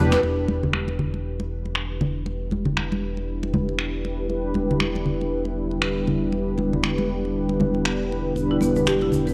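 Afro house with a spiritual, hypnotic mood, this short excerpt opens on a drum fill and settles into a swung groove of punchy, overdriven electronic finger snaps and snare alongside hard-handed, close and dry congas, over a smooth gliding sawtooth bass and a slow-blooming chorused pad holding an Em7 chord. Dark, detuned synth brass stabs with chorus and tape echo run throughout, while a filter sweep moves across the analog polysynth. Woody marimba arpeggios with tape echo appear only at the start and again from 8.5 seconds. A grainy, bright egg shaker likewise flickers at the start and returns from 8.4 seconds, just ahead of the marimba, all set in a gritty cassette-tape sound with light reverb.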